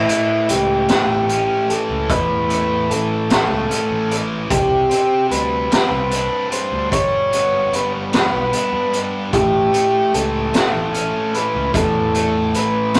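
Trippy and hypnotic, this psychedelic rock excerpt sways at 50 BPM in 6/8 in A mixolydian, with a mellow vintage combo organ carrying the melody up front through spring reverb over a bright, double-tracked overdriven stack guitar riff, a dark, round fuzz bass, and a gritty, punchy garage drum kit of hi-hat, kick and high-tuned snare entering at 0.1 s, as the chords move from A through Csus2 and G back to A in a rough rehearsal-room sound with tube saturation.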